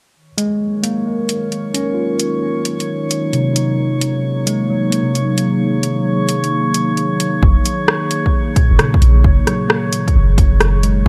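Nocturnal and melancholic, this future garage excerpt moves at 132 BPM in Eb minor with a swung 16th-note feel. A clean tine electric piano, run through a combo amp with digital delay and a filter sweep, opens alongside a deep house drum kit of overdriven metallic hats and rim clicks, while a warbling, nostalgic tape-like pad and a glassy, drifting harmonics texture settle in above. At 7.4 seconds the chords move from Ebm7 to Gb69 as a soft, round 808-style bass and a punchy, overdriven electronic kick arrive up front, with the pad, piano and bass all pumping under sidechain in a light digital ambience.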